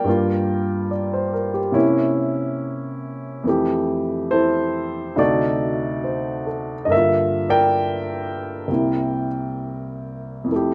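A slow, rubato swing at 69 BPM in 4/4 drifts with uneven beats and a lazy lilt, giving this short solo jazz passage a relaxed, sophisticated mood. An upright piano plays alone throughout, ranging from C2 up to G5 over a progression that moves from Gm7 through C7b9, Fmaj9 and D7b9, returns to Gm7, and arrives on C7. Its woody, intimate tone sits up front with long sustain and audible action noise, set in a moderate studio reverb.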